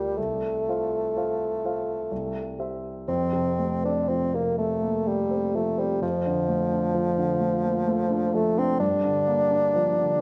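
A mellow bassoon, up front and singing with vibrato, opens this tender romantic classical duo alongside a warm grand piano accompaniment, the two moving in a flexible, rubato triple metre within a lush recital hall reverb, as this fragment of a longer piece passes into a new section at 3.1 seconds and its harmony travels through F/C, C, F, Dm/F and Gm7.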